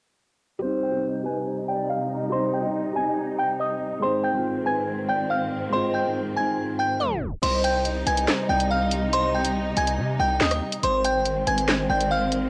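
Drill hip hop in C minor at 141 BPM with a half-time feel, this cold, dark passage is cut from a longer piece and moves between C minor and A-flat chords. It opens with a delicate, tinkling FM synth bell carrying the melody up front, while a mellow gliding lead with portamento and vibrato sits in the background as a second line; both parts carry chorus and cassette tape coloring. Beneath them, a felt-muted upright piano with audible action noise plays soft accompaniment, and a lush bowed string section holds sustained chords under a filter sweep. A tape stop at 7.0 seconds breaks off the opening, and at 7.4 seconds a distorted, saturated 808-style bass and an electronic drill kit arrive as the piano drops away. The kit brings a sharp snare, bright hi-hats, handclaps, rim clicks and crash cymbal, roughened by 12-bit sampler grit, and the whole recording sits in light reverb and digital ambience with a homemade cassette character.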